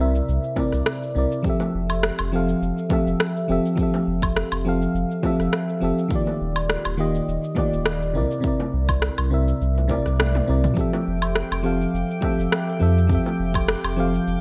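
Smooth and unhurried, this short sunset chillout excerpt with a gentle swing rests on a soft, full-bodied FM electric piano with chorus and delay over a deep sine sub bass, while an overdriven deep house kit of cabasa, rim click, toms and woodblock sits up front beside a layered electronic kick, low-tuned bongos murmur in the background, a drum fill runs from 10.2 to 10.8 s, and a glassy, drifting harmonics texture arrives at 10.9 s, all within a bright 1980s-style digital sheen and plate reverb.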